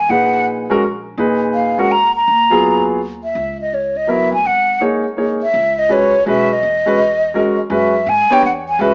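A swinging 3/4 pulse at 166 BPM drives this short modal jazz excerpt, cut from a longer piece, with an intense, spiritual mood. A breathy, mellow silver concert flute carries the melody up front, close-miked and hollow, tongued with vibrato, ranging from Db5 to Bb5. A concert grand piano accompanies with deep bass, long sustain and a smooth, vintage character, entering at 0.1 seconds, while a pizzicato upright bass on gut strings gives a woody, thumpy foundation low in the mix. The harmony moves from Ebmadd9 to Dbm9 at 3.4 seconds, then shifts to F#9sus4 as a new section begins at 7.7 seconds. The band plays live together in a moderate stone room with a small speaker sound.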